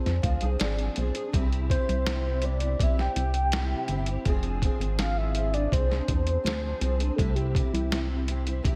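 Laid-back and sunny, this short bedroom-pop and indie-pop fragment moves at a relaxed 82 BPM in 4/4. It sways between Fm6 and C chords over a compressed, muffled sampler-style drum kit with a thumpy kick, and a glossy, dark chorused synth bass sits up front. Picked steel-string acoustic guitar carries the accompaniment with finger squeak, ensemble chorus and a warbly pitch drift, while a metallic, ringing vibraphone with fast motor vibrato glints in the background from 0.2 to 1.1 s. A round, octave-layered synth lead with vibrato and slapback echo then takes a soft solo from 1.3 s, all in light, ambient reverb.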